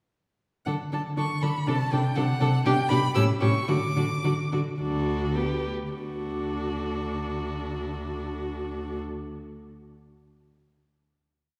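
A bowed cello, rich and up front with expressive vibrato and portamento on repeated bass notes, anchors this spirited, cheerful classical-period string quartet piece in D major, where a warm first violin sings the melody high above a focused second violin's repeated notes and a viola's smooth-topped inner line, all at a quick 102-123 BPM in 2/4 with rubato, slowing from 3.2 seconds through a brief coda into a sustained final chord at 5.9 seconds that rings in a wet concert hall heard from further back in the room.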